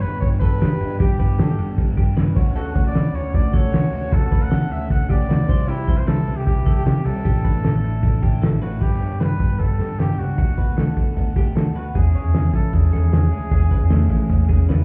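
Jangly indie pop with a bright, nostalgic mood, this excerpt is led by a raspy, growling trumpet with light vibrato carrying the melody over a crunchy overdriven guitar and bright, twangy twelve-string arpeggios. A round, foam-muted picked bass and a cloth-damped, thuddy drum kit with a fat snare, tight kick and dark cymbals sit up front, the drums sounding lo-fi and gritty. The whole mix is heard as if muffled through a wall with a light club reverb, moving from a G to Asus4 passage into a new section at 8.8 seconds that closes on E6.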